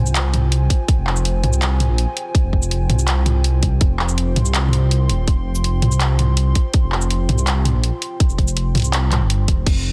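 Half-time drum and bass in a heavy, cinematic drop, cut from a longer piece and built on a single sustained chord. A deep, rumbling detuned saw bass with a beating edge sits up front beside a layered electronic drum kit of bright hats, handclaps, shaker, toms and crash, joined at 0.7 seconds by a tight electronic kick; both drum parts were re-recorded in a small room. Behind them, a moody analog pad with a slow attack, chorus and sidechain pumping holds long, wave-folded chords, and the mix sits in dense digital ambience under a heavily limited modern master.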